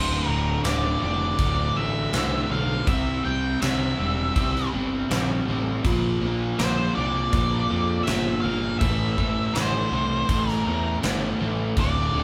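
Cathartic and angsty, this short cut from a longer quiet-loud alternative rock piece moves at a steady, straight 81 BPM in 4/4 through Dsus2, C, Bb5 and Am. Up front, a dark octave-fuzz lead guitar carries the melody over a raw garage guitar riff and a bright, crunchy overdriven guitar set in the background, while a growly fuzz-picked bass anchors the low end. A huge arena drum kit with a fat snare, punchy kick and crashes enters at 0.6 seconds, and the band sounds as if playing live together in one room with moderate reverb.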